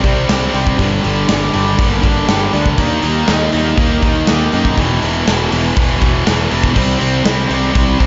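A straight 4/4 pulse at 120 BPM drives this angsty, cathartic fragment of quiet-loud alternative rock in E harmonic minor, taken from a longer piece. A big acoustic rock kit sits up front with a punchy kick, a medium-tuned snare and hi-hat, set in a bright stone room. A tight, distorted guitar riff also sits forward, while a cranked stack guitar plays a riff further back with overdrive and spring reverb. A twangy, slightly broken-up guitar through a small old amp plays lush chorused arpeggios in the background until 4.8 s, and a round, fuzzy picked bass anchors the low end. The chords move from Cm to Gm and D#, then to the power chords E5 and C5, all framed by a moderate concert hall reverb and a big arena sound with a dark top end.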